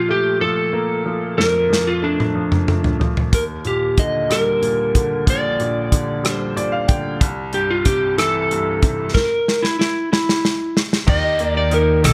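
A straight six-eight sway at 62 BPM carries this romantic pop ballad, where a slightly broken-up electric slide guitar, played with fingerpicks and touched by tape echo, sings the melody up front over a brilliant upright piano with long sustain that adds its own fill around 6.2 seconds; a loose, rolled-off acoustic drum kit with a tight kick joins at 1.4 seconds with fills, and at 11.1 seconds a thumpy pizzicato upright bass and twangy, direct-recorded clean electric guitar arpeggios with tape echo slip in beneath the harmony as it moves from Bbmaj7 through Ebmaj7 and C to Ebadd9, all in a light small-room reverb.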